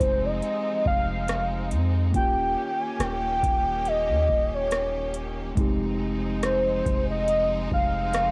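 Contemporary R&B with a longing, sensual mood, this short cut from a longer piece moves between Fm7 and Eb7 with a lightly swung feel, all of it captured as a home recording on cassette. A velvety, chorused synth lead carries the melody up front with vibrato, while a mellow tine electric piano and a lush, bowed string section pumping against the sidechain sit beneath it, each colored by tape. A deep, decaying 808-style bass and a booming, overdriven analog drum machine of kick, metallic hi-hats and rim click, re-recorded in a small room, anchor the groove within a digital ambience.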